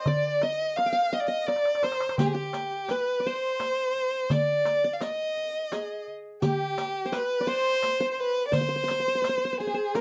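In a straight 3/4 at 85 BPM, this melancholic, longing Arabic maqam ensemble piece in C nahawand is cut from a longer performance. A single bowed violin carries the melody up front, close and warm, with a soft attack, expressive vibrato and gliding portamento. A fingerpicked qanun plays a bright-edged second line on its triple strings, while a crisp, dry metal-shell darbuka played with soft hands supplies the pulse, adds a fill at 1.5 seconds, and is joined at 2.2 seconds by a riq with dark jingles, all set in a light reverb.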